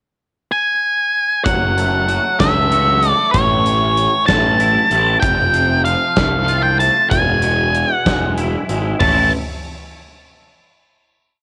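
A lo-fi cassette home recording in a small room carries this short, restless and anthemic quiet-loud alternative rock piece in 6/8 at 64 BPM, where a dark octave-fuzz lead guitar states a motif-based melody up front from 0.5 seconds before a twangy, chorused electric guitar with tape echo picks arpeggios, a growly overdriven bass locks to the punchy kick, and a big, smooth rock drum kit joins at 1.5 seconds for a verse moving through F#m, A, F and E, closing on a final A chord at 9.0 seconds.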